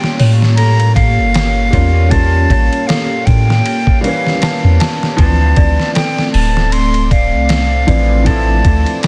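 A brooding, hypnotic trip hop excerpt opens with a gritty, compressed sampler-style drum kit up front, its thumpy kick and fat snare joined by hi-hat and ride cymbal in a lightly swung 4/4 groove set in a small room. A breathy silver flute carries the melody in a close-miked, straight tone with tape echo. Beside it, a felt-muted upright piano plays soft, intimate accompaniment through harmonic tremolo and tape echo, its action noise audible. Around them a dark analog pad holds detuned sawtooth chords with a sub octave and chorus, while a delicate, bell-like celesta sits in the background with echoed arpeggios. At 0.2 seconds a deep, round 808-style bass enters up front, its sine tone decaying after a fast attack. The harmony moves from a tense A7b9b13 to Dm9 at 5.2 seconds, and the mix is dense and heavily limited.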